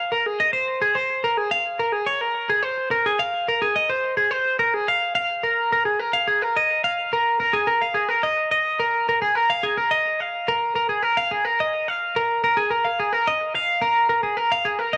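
The recording has a lo-fi home cassette character, with the softness of tape, a small room's ambience and a light reverb around the sound. A lone twelve-string electric guitar carries this rock fragment, cut from a longer piece, playing clean and picked in 6/8 with a straight feel. Its tone is bright and twangy, compressed and placed up front, with a warbly pitch drift and tape echo that give the notes a wavering shimmer. The line stays in a high, narrow register, and its mood feels restless and intricate. Around 5.1 seconds the passage shifts into a new section that carries on through to the cut at 15.0 seconds.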